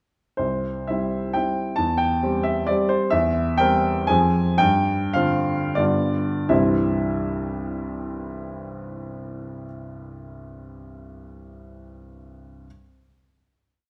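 Rustic and graceful, this brief romantic-era classical piece is a triple-time dance for solo baby grand piano, its open, long-sustaining tone heard up front in a recital hall as a single-line melody rides over bass and chords stressed on the second or third beat, with dotted rhythms and rubato, easing into a slowdown from 2.5 seconds before settling on a final chord at 6.5 seconds.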